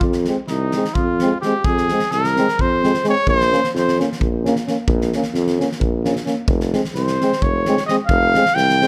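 Balkan brass band folk in a straight 7/8, this bittersweet, virtuosic fragment of a longer piece sets a classical-style trumpet up front with light vibrato, carrying the melody from 0.5 to 4.0 seconds and again from 7.0 seconds, over a vintage-toned tuba bass line, two background euphoniums (one with a smooth top) playing close accompaniment, and a loose acoustic kit with a punchy kick and fat snare in a pumping studio room, all under light reverb as the harmony moves from F minor to B-flat minor and back.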